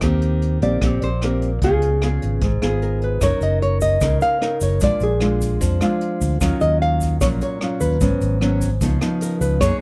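Dry, closely miked and detailed, this relaxed, breezy bossa nova fragment opens with a thumb-plucked classical nylon-string guitar comping chords like Eb6 and Db7, joined at 0.6 s by a second thumb-plucked nylon-string guitar, up front with fresh strings, carrying the melody. Underneath, a dark, round and punchy fingered electric bass sits up front, and a natural-sounding brushed jazz kit adds hi-hat, rim clicks and a boomy kick. At 3.2 s the music moves into a new section over F#6 and D#m9 harmonies, and a grainy, bright egg shaker joins from a distant, roomy space.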